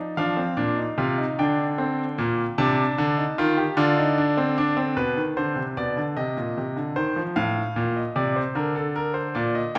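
Classical baroque-style three-part fugue for solo grand piano in B-flat major, serious and driving at 50 BPM in a straight 6/8 counted in dotted quarters, cut from a longer piece, with a brilliant, intimate, up-front piano tone whose audible action noise and long sustain sit in a wet scoring-stage reverb as the harmony moves from Bb through Adim/C and Dm7 into a second section at 5.0 seconds that passes Bm, Cm and F7/A before settling on Bb/D.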